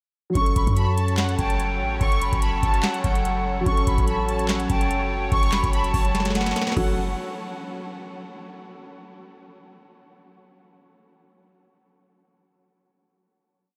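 Trap-style hip hop at 145 BPM in a half-time feel, this short, eerie and melancholic piece sits on a single F# minor chord, with a booming analog drum machine driving a bouncy beat of deep kick, crisp snare layered with clap, and metallic sixteenth-note hats with fast rolls, while a clean, sine-like 808 bass plays long sub-bass notes with pitch slides that follow the kick. Over this, an airy silver flute carries a looping vibrato melody through a diffuse delay, a lush bowed violin section adds a sparse counter-melody, a dark, mellow grand piano with audible action noise holds spread chords, and a detuned sawtooth pad with a slow attack evolves through a filter swell. A drum fill at 6.1 seconds leads to a final hit at 7.0 seconds, and the whole dreamy mix is soaked in a huge, long ambient reverb.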